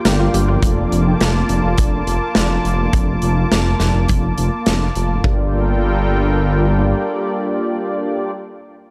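Synthwave in G minor at 104 BPM, cinematic and driving, where a smooth, warbling pad holds sustained chords with sidechain pumping, a round pluck flickers an arpeggio in the background until 0.6 s, brassy synth stabs with vibrato and tape echo carry on to 8.3 s, a deep, rumbling detuned saw bass sits up front, and a punchy kick drum joins a big rock kit of hi-hat and up-front snare in a studio room before the kit drops out at 5.1 s and the kick at 5.4 s, all in a dark production with light reverb that shifts from Gm7 to Bbmaj7/F and a filter sweep on the polysynth.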